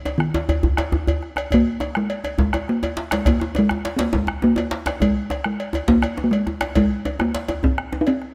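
A resonant talking drum opens at 0.0 seconds and carries the melody up front, ranging from Eb3 to Eb4 in Ab major pentatonic. This short cut from a longer West African drum ensemble piece feels powerful and driving, moving at 137 BPM in dotted quarters over a straight 12/8. A metallic cowbell, compressed and saturated, joins almost at once, alongside two medium-tuned djembes. One djembe sits up front in a small-room sound, while the other is played with soft hands in the background. Beneath them a deep, dark bombo, close and dry, anchors the low end from 0.2 seconds until the close at 8.3 seconds. The ensemble is captured with close, detailed microphones and a light touch of reverb.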